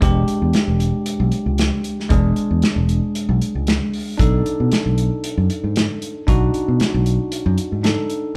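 This gritty, soulful excerpt of straight-eighth soul blues opens with the full band at once: a bell-like tine electric piano, a fingered electric bass and a soul drum kit, all sitting up front in the mix. The tempo is 115 BPM in 4/4, with a light 55% swing on the sixteenths. The electric piano supplies the accompaniment in a bright, clean, direct tone, voicing an E7#9 chord that shifts to B7#9 at 4.2 seconds. Underneath, the bass is dark, round and punchy, heard both direct and through an amp, while the acoustic kit of hi-hat, kick and snare has a tight kick, a medium-tuned snare and a rolled-off top in a small-room sound. The band plays live in one room with light reverb, and the bass drops out at 7.9 seconds, just before the piano's last notes close the clip at 8.4 seconds.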